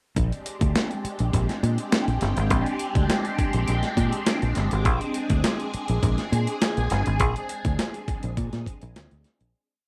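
A punchy, foam-muted fingered electric bass sits up front in this short funk breakdown, playing a syncopated riff anchored on the downbeat with muted ghost notes. Beside it, a gritty breakbeat sampler-style drum kit, overdriven and compressed with a thumpy kick and a medium-tuned snare, lays down a tight sixteenth-note groove on hi-hat, kick and snare, sounding as if re-recorded in a small room. A swirling vintage string machine with a sawtooth edge, ensemble chorus and phaser holds sustained chords, opening on a Bb13, with a slow attack and a bright tone. The mood is strutting and playful, set in a digital ambience. The three parts enter within the first half second, and the piece fades out from 7.2 seconds to its close at 9.5 seconds.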